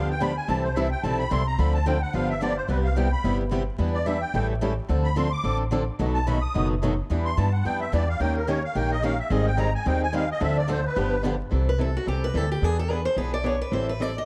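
A reedy, shimmering musette accordion carries the solo for the first 11.5 seconds of this lively, swinging jazz manouche excerpt in C major at 218 BPM, close-miked and full over two picked acoustic guitars, one a boxy parlour steel-string with finger squeak and the other a bright swing-style box, both with fresh strings. A woody, thumpy upright bass on gut strings sits up front, plucked pizzicato, as the chords move from C6 through Dm7 and G7 to turns on Eb7 and Abmaj7. At 11.7 seconds a bright concert steel-string guitar takes the melody with tape echo, all within a dark production touched by light studio reverb and vinyl crackle.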